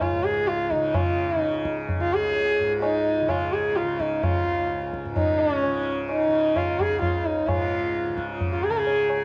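Devotional and meditative, this brief fragment of Hindustani classical music moves at 129 BPM in 7/4, with a dark, intimate sarangi carrying the melody up front with light vibrato, soft gliding portamento and sympathetic strings, over a softly plucked, buzzing tanpura drone and close, high-tuned tabla, the bowed and plucked strings tinted by cassette tape and the whole set in a small room with moderate spring reverb.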